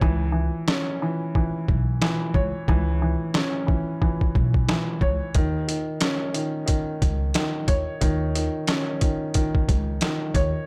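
Reflective and moody, this boom-bap hip-hop excerpt sits in a swung groove cut from a longer piece. A dark grand piano carries the accompaniment up front, its mellow, smooth, vintage tone given a short sustain and filtered through a cassette-tape coloring. Beneath it, a pizzicato upright bass with gut strings supplies a woody, thumpy low end. The sampler-style drum kit is compressed, pitched down and gritty, pairing a thumpy kick with a medium-tuned snare, re-recorded in a large room and placed up front. The opening stretch is a break in which the hi-hats drop out from 2.7 to 5.3 seconds, and at 5.3 seconds the harmony moves from a minor chord to a suspended one. A small room ambience surrounds the whole track.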